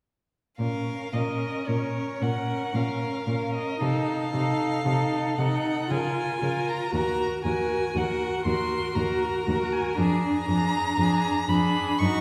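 At 0.6 s a string quartet enters together in an elegiac, melancholic fragment of a slow romantic movement in triple time, its uneven beats pulled by rubato. The first violin carries the melody with rich, soft-attacked vibrato and expressive portamento, while the second violin's focused, distant line and the close, sliding viola accompaniment fill the middle. Beneath them, the up-front cello plays the bass with a warm, smooth top, all heard from further back in a wet scoring-stage reverb until the violins and viola stop at 12.2 s.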